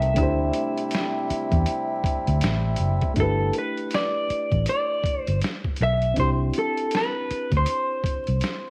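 A lazy swung sixteenth-note feel drives this smooth, late-night slice of neo-soul R&B, set by a gritty, pitched-down boom bap sampler-style kit with a thumpy kick, medium-tuned snare and hi-hat sitting up front. A dark, foam-muted fingered electric bass with a round, amped tone anchors the low end, while an overdriven reed electric piano played through a combo amp fills in the accompaniment with a reedy bite. Carrying the melody is a twangy, fingered electric guitar at the edge of break-up, compressed and up front, colored by harmonic tremolo and slapback echo. A mellow accordion adds full, boxy sustained chords under the opening D9sus4 before dropping out at 3.1 seconds, as the harmony moves to G69 at 3.2 seconds and then to C at 6.2 seconds. Light reverb and a bed of vinyl crackle give this short cut from a longer piece a worn, intimate glow.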